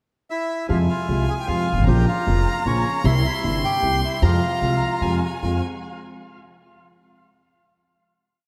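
Soaked in lush hall reverb for a dreamy haze, this brief, complete tango in waltz time and F harmonic minor moves at 152 BPM with a rubato, melancholic and tense feel, as a reedy, bright bandoneon with diffuse ambient delay enters at 0.3 s carrying a motif-based melody partly doubled in octaves, joined at 0.7 s by an expressive bowed violin counter-melody with vibrato and portamento, an intimate concert grand piano with analog chorus and audible action noise accenting the first beat, and a woody, growly pizzicato upright bass, before a final chord arrives at 5.4 s.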